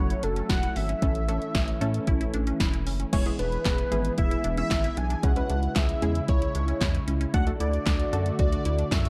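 Synth-pop at 114 BPM in E mixolydian, bright and upbeat, cut from a longer piece: a thick, bold detuned unison lead with vibrato carries the melody over a rubbery, bouncy square bass and a punchy analog drum machine up front with kick, snare, hi-hat, handclaps and crash, while a funky, nasal polysynth comp with chorus, a smooth, warbling vintage pad and a squelchy resonant blip pluck arpeggiating through phaser and tape echo sit in the background, the whole given a dark production with light reverb and digital ambience as the chords move from F#madd9 and A to E, C#m and D.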